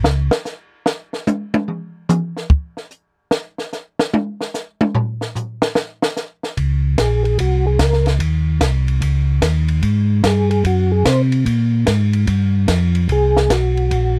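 A compact cocktail drum kit opens this bluesy, greasy soul jazz organ trio at 147 BPM, soloing on hi-hat, kick, snare, toms and ride in a swung 4/4, its dark cymbals, high-tuned snare and punchy kick sitting dry and up front. After a brief touch at the very start, a round, dark tonewheel organ takes up the bass line at 6.6 seconds through a slow rotary speaker with audible key click. From 7.0 seconds a soft, flute-like tonewheel organ with second harmonic percussion and chorus vibrato carries the melody in Ab mixolydian over Bbm, Cm and Ab7 changes, all in a close, 1970s-style studio sound with little reverb.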